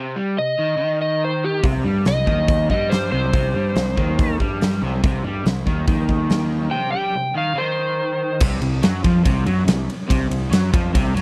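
A crunchy, double-tracked overdriven guitar opens this smoky, gritty blues rock and southern rock excerpt with a picked riff on a C minor chord, and a dark slide guitar, played with fingerpicks, soon carries an up-front melody above it. At 1.6 seconds a fuzzed, amped electric bass and a huge arena drum kit come in, the kit sounding acoustic with a pumping hall room, bright cymbals, a medium-tuned snare and a punchy kick. The slide melody stops at 8.4 seconds as the harmony drops away, leaving the trio to drive on in a dry, gritty mix.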